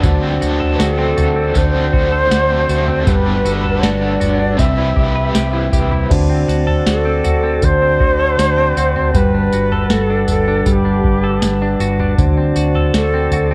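Worn, warbling cassette-tape sound with light reverb frames this floating, dreamy dream pop piece at 79 BPM in D mixolydian, cut from a longer piece, where a breathy, distant shakuhachi melody with delay enters at 0.7 seconds over bright semi-hollow guitar arpeggios with analog chorus and delay, slow-rotary tonewheel organ chords, a round foam-muted fingered bass, an overdriven vintage rhythm box with deep kick, crisp snare, tambourine and toms, and a biting, double-tracked overdriven guitar with tremolo and lush chorus that stops at 6.6 seconds, as the chords move from D7 through Gmaj9 and Cmaj7.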